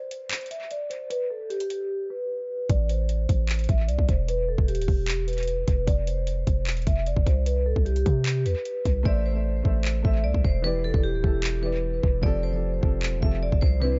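Echo-heavy and dulled at the top, this melancholic, menacing excerpt of half-time trap in A minor at 151 BPM opens on a ringing, metallic vibraphone melody with dub echo and a filter sweep, joined by up-front electronic drums with a hard-clipped kick, handclaps and metallic hats, before a deep, boomy 808-style sine bass with a noise layer arrives at 2.7 seconds after a brief drum drop, and a worn, boxy grand piano with audible action noise enters at 9.0 seconds as the hi-hats fall away, over chords moving from Am and Em to F5 and C5, then back to Am, Em7 and Fadd9.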